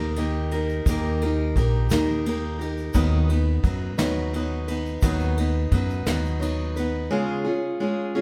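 A slow, steady 6/8 at 58 BPM sets a gentle, hopeful mood in this short acoustic folk excerpt, cut from a longer piece and moving from Eb through Cb over Eb to Db. Picked steel-string guitar with audible finger squeak and woody, thumpy pizzicato upright bass on gut strings sit up front, while a soft brush kit with punchy kick, medium-tuned snare and ride adds airy polish, and a grainy tube shaker stays very quiet. The whole is heard from further back in a large studio with moderate reverb, and the guitar rings on alone after the bass stops at 7.1 seconds.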